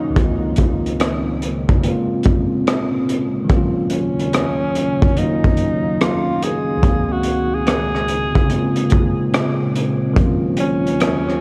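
Hazy and melancholic, this lo-fi hip hop excerpt moves at 72 BPM in Bb minor with a swung sixteenth feel, its chords cycling through Dbmaj13, Bbm9, Ebm9 and Bmaj9#11. A breathy, whispered tenor saxophone carries the jazz-style melody with vibrato and scooped notes through a diffuse delay, over a bell-like, clean tine electric piano and a deep, moody pad of detuned sawtooth and sine voices sitting in the background. A gritty, saturated breakbeat kit of kick, hi-hat and rim click comes in at 0.2 s, up front with a tight kick and a rolled-off top, and the dreamy mix is soaked in huge reverb and cassette tape character.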